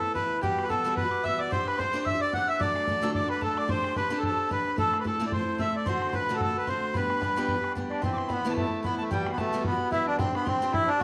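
Rollicking and cheerful, this Celtic folk reel bounces along in a swung 4/4, caught as a short cut from a longer piece. A reedy single-reed accordion carries the melody up front, its dry tuning sounding clear. Behind it, a metal whistle adds a second line, airy and bright with vibrato, a crisp chiffy attack, and a place well in the background. A picked steel-string parlour guitar sits up front with a boxy acoustic body, while a bodhran enters at 0.2 seconds with an open, boomy tone that sounds distant, as if in a large room. The harmony moves through chords such as Emadd9, Csus2, D and Am before arriving at Amadd9 as the section repeats at 8.0 seconds, and a wet echo-chamber reverb gives the whole a small-room ambience.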